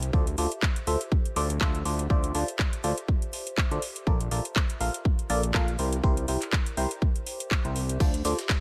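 Swung sixteenths at 122 BPM set an energetic yet bittersweet piano house groove in D minor, built on a punchy, up-front electronic kick and a house kit of metallic hi-hats, handclaps, shaker and crash, with a fat, wave-folded, sidechain-pumped analog bass underneath and a biting, barking FM electric piano riff treated with phaser and digital delay over Dm7, Bbmaj7 and C7, while a very quiet, warbling lo-fi pad adds nostalgic haze and a gritty, sampler-style soul kit slips a ride cymbal and fat snare into the background at 8.0 s.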